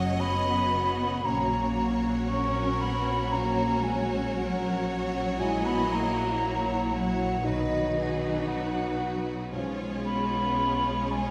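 A slow, lyrical romantic orchestral movement in F# major at 58 BPM, with a rubato 4/4 feel, opens with a lush bowed violin melody, a hollow, pure silver flute singing a second line above it, smooth second violins, expressive violas with portamento, woody cellos and double basses carrying the bass, and a concert harp's ringing arpeggios in the background, while a mellow French horn section adds sustained chords from 1.2 to 9.9 seconds, set back in a reverberant scoring stage in this short excerpt from a longer piece.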